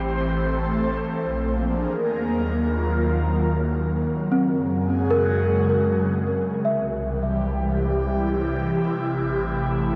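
Drenched in a huge reverb and the worn, warbling pitch drift of old cassette tape, this reflective, melancholic ambient fragment moves at 78 BPM in 3/4. An airy, breathy pad sits up front with sustained chords colored by chorus and phaser, over a deep, round sine sub bass, as the harmony drifts from Am through Bb7, Ebmadd9, F#sus2 and C before returning to Am. At 4.3 seconds a delicate, bell-like celesta enters with sweet delayed arpeggios, playing until 9.0 seconds.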